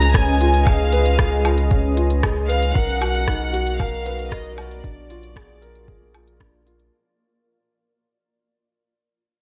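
This short excerpt of melancholic, hypnotic piano-and-strings electronica opens at once with a felt-muted upright piano riff, a bowed violin section melody, a granular cloud pad, a deep sub bass and an organic electronic drum kit, joined almost immediately by a muffled, thumpy electronic kick. The piano sounds soft, dark and boxy, while the violin ensemble plays close and intimate, sul tasto with light vibrato and a soft attack, its lines trailed by tape echo. Behind them, the pad sits in the background as a blurred, slowly evolving haze with its own reverb, holding sustained chords that move through Db7, Bmaj7 and Bb7. The round, sine-like sub bass is up front with a sidechain pumping effect, and the compressed, pitched-down kick sits prominently. Smooth hi-hats, rim clicks and woodblock from the tape-warm drum kit fill out the groove of this drop passage, which fades out across its whole length under light reverb.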